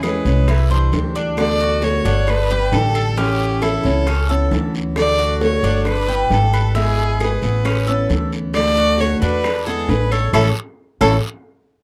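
Warm and danceable, this excerpt of Cuban son and guajira moves at 134 BPM in D major, with a clear, focused bowed violin up front carrying the melody with vibrato and a slapback echo. A full-bodied picked steel-string guitar and a bright, metallic Cuban tres spinning double-string arpeggios fill the middle, while a dark, woody pizzicato upright bass sits up front and tight, high-tuned bongos and claves in a distant large room join a close, raspy guiro in the background. The dry, close 1970s-style studio sound carries light reverb, and the band hits an accent from 10.3 seconds to the end.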